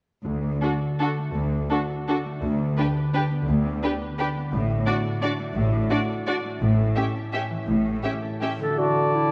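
A worn, warbling cassette-tape sound with pitch drift colours this elegant, festive classical excerpt in 3/4, taken at a rubato pace around 155-187 BPM in D major and set in a moderate concert hall. An up-front, ringing concert harp plays arpeggios from 0.3 s as bowed double basses and a close, focused cello section hold the bass, while a distant, lush violin section carries the melody over a soft-attack second violin line and smooth violas, all with vibrato, moving from D through G/D and D/A to A7. At 8.6 s the strings give way to woodwinds, a mellow clarinet joined by a bright oboe, an airy flute and a bassoon, settling back on D alongside the harp.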